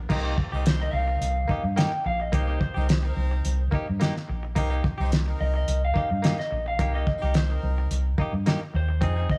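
A small old amp drives the electric guitar melody, warm and slightly broken-up with spring reverb, entering at 0.7 seconds over a single Cm7 chord in this smoky, soulful straight-eighth soul blues excerpt in C minor at 108 BPM. Beneath it, a cloth-damped drum kit thuds with a fat snare, tight kick and dark, muffled cymbals, sitting up front beside a round, foam-muted fingered electric bass. A twangy, direct-recorded clean guitar plays stabs through tape echo, while a bright, tight horn section holds sustained chords far back in the mix, all in a dry, lo-fi sound.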